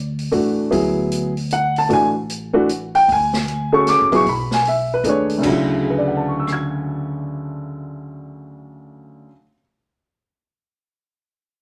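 Modal jazz in a swinging 3/4 at 153 BPM, open and hypnotic, with a dark, boxy upright piano up front carrying chords like Dadd9 and Dmaj9 in D lydian over a growly, thumpy pizzicato upright bass. A big-band drum kit with a boomy kick, medium-tuned snare, rim clicks, hi-hat and crash supports them until 6.5 seconds, all set in a wet club reverb. This short cut from a longer piece closes with the mellow piano ringing on to 9.6 seconds.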